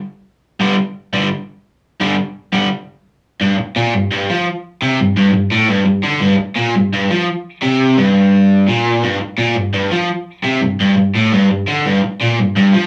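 A crunchy overdriven electric guitar enters alone at 0.6 seconds, bright, picked and double-tracked, sitting up front with a raw, swaggering rock attitude in a straight 4/4. It moves from a power chord to a minor chord at 3.4 seconds, and from 9.0 seconds the chords fall away for its final stretch before this fragment of a longer piece cuts off at 12.9 seconds. A short, wet small-room reverb and rough rehearsal-space ambience give the recording a loose, live-in-the-room feel.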